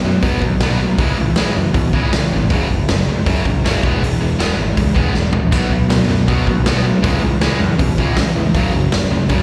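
Rowdy and upbeat, this short punk rock excerpt drives along in a straight 4/4 as a bright, overdriven electric guitar riff with slapback echo and a growly, fuzzed-out picked bass play from the start over B, C#m, F#5 and E. A raw garage drum kit sits up front with a punchy kick and a medium-tuned snare, and it plays a fill at 5.2 seconds. After that fill, a very quiet, hollow-bodied overdriven semi-hollow guitar joins at 5.5 seconds, all of it heard as a live gig through the venue's PA with a light recital-hall reverb.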